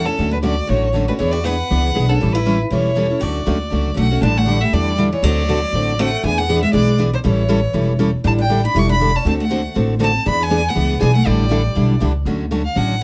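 From the opening moment a playful, lively jazz manouche swing in D major races along at 239 BPM, with a clear, smooth bowed violin carrying the vibrato-laced melody up front, a picked steel-string acoustic guitar with fresh strings adding a bright second line until 12.0 s, another such guitar and a full-bodied jumbo guitar further back picking accompaniment with audible finger squeak, and a woody, growly pizzicato upright bass thumping prominently underneath, all captured by close, detailed microphones in light reverb as the chords move from Dmaj7 through E7, A7 and A7sus4 before this short cut from a longer piece returns to Dmaj7 at 12.3 s.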